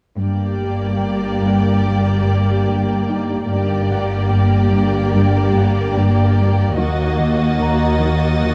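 A dark, lush string orchestra opens at 0.2 seconds on a G minor chord, setting a mysterious, ominous cinematic mood at a slow 73 BPM in 4/4. Bowed symphonic violins carry a narrow, vibrato-rich melody around D5 and Eb5 over a second violin line and smooth, even violas on Bb3, while a close, very quiet chamber cello section plays an expressive riff with soft attacks and portamento. Beneath them, a rich double bass section and a background symphonic cello section anchor the low end from G1 upward. A very quiet concert harp enters at 1.5 seconds with ringing, thumb-plucked notes, and at 6.8 seconds the harmony darkens to E-flat minor as high violins join with a soft-attacked texture up to A6. A moderate scoring-stage reverb gives the dark production a spacious bloom, and the passage is cut from a longer piece.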